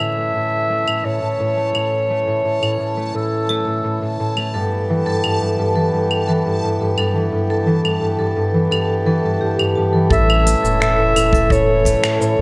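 A mellow, distant clarinet carries the melody up front in this delicate, hopeful folktronica excerpt at 86 BPM in A mixolydian, over ringing fingerpicked harp arpeggios shaped by a filter sweep and delay, reedy, breathing harmonium chords, a crisp electronic kit of claves, finger snaps, hi-hat and shaker, and a faint reversed granular swell, with a bright, metallic vibraphone second line with fast motor vibrato joining at 4.5 seconds and a round sine sub bass and punchy background kick arriving at 10.1 seconds, heard in a moderate concert hall reverb with vinyl crackle.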